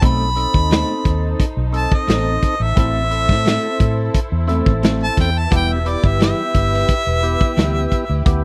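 A dry, close 1970s-style studio sound frames this mournful, brooding soul blues excerpt in E minor at 87 BPM, where a mellow harmonica with light vibrato and scooped notes carries the jazz-style solo up front over chords moving from B7b9 to Am at 2.8 seconds and Em at 5.5 seconds. Crunchy breakbeat drums with a tight kick and a rolled-off top sit forward alongside a round, foam-muted fingered electric bass, while a percussive tonewheel organ with key click turns through a slow rotary speaker. Behind them, a veiled con sordino string section holds bowed chords and a slightly broken-up electric guitar through a small old amp adds picked stabs until 7.8 seconds.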